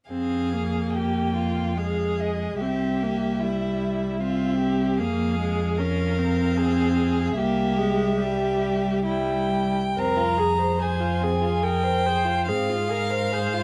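In a lilting three-beat metre played with a freely flexing rubato, this slow, romantic movement for string quartet unfolds with a yearning, elegiac mood, heard as a passage cut from a longer piece. The first violin carries the melody high in its range, its tone rich and smooth with an even, singing vibrato. Beneath it the second violin traces a warm, distant inner line, while the viola, the most prominent voice in the mix, supplies a focused accompaniment with a silky top. The cello anchors the bass close and up front, bowed smoothly with only a light vibrato. The harmony sways between a minor home chord and a tense dominant seventh before a new phrase begins at 10.0 seconds and settles onto a shifted-bass voicing of the home chord at 12.5 seconds. A moderate reverb from a large studio and a dark production give the quartet a veiled, enveloping glow.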